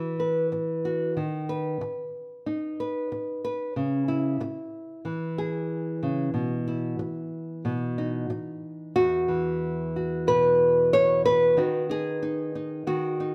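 Folk fingerstyle piece at 92 BPM in E major, nostalgic and hopeful, played on a small, warm, fingerpicked nylon-string guitar sitting up front in a moderate stone room reverb, moving from Esus2 through B/D#, C#m and E5/B before a new section at 9.0 seconds returns to Esus2, in a short excerpt cut from a longer piece.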